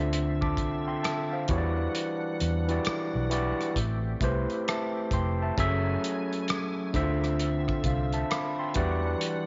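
A slow, swung 16th-note groove in 4/4 drives this soulful, sultry neo-soul R&B fragment, carried by a cloth-damped, thuddy drum kit with tight kick, hi-hat and rim click, and a dark, round, foam-muted vintage electric bass. Up front, an overdriven tine electric piano plays gritty accompaniment through a combo amp, while a reedy tonewheel organ holds sustained chords softly behind it, with key click, chorus vibrato and a fast rotary speaker. Lush minor ninth chords move through a moderate echo-chamber reverb, and the rolled-off sound carries a faint mains hum.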